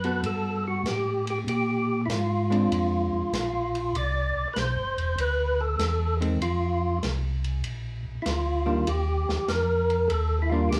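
Soul jazz organ trio with a bluesy, greasy mood, swinging at 97 BPM in 4/4, heard as a 10.8-second slice cut from a longer piece. A percussive tonewheel organ carries the melody between E4 and D5, its fat, lightly overdriven tone marked by third harmonic percussion and key click, colored by chorus vibrato, a slow rotary speaker and plate reverb, and placed up front. A second, mellow tonewheel organ handles the bass from E1 to Bb2, round, dark and clean, also with chorus vibrato and slow rotary. A hollow-body jazz guitar supplies picked, clean, shadowy accompaniment from Eb3 to A4, while a vintage acoustic drum kit of hi-hat, ride and a medium-tuned snare sits lower in the blend, lo-fi and muffled with dark cymbals and a rolled-off top. The harmony moves from Gmaj9 through Bb9, Cmaj9, F5 and Bb to Ebmaj7, all in a moderate club reverb with small room ambience.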